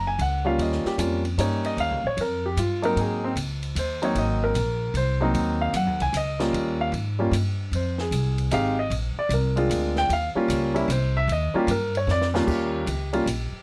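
This jazz piano trio excerpt swings at a brisk 151 BPM in 3/4, with a sophisticated, playful mood centered on Eb mixolydian. A warm grand piano sits up front and carries the melody as a solo, ranging from Eb2 up to Ab5 over changes that move between Ab7 and Eb7, with a turnaround through Fm7 and Bb7. Beneath it, a woody pizzicato upright bass on steel strings holds down the low end, also placed close in the mix. A compact cocktail drum kit sits further back, with a punchy kick, a high-tuned snare and dark cymbals across ride, hi-hat and crash, and it plays a fill at 12.1 seconds. The piano solo gives way to a new section at 12.5 seconds, shortly before the clip ends at 13.6 seconds, and the close, detailed miking with little reverb gives the trio a dry, intimate sound.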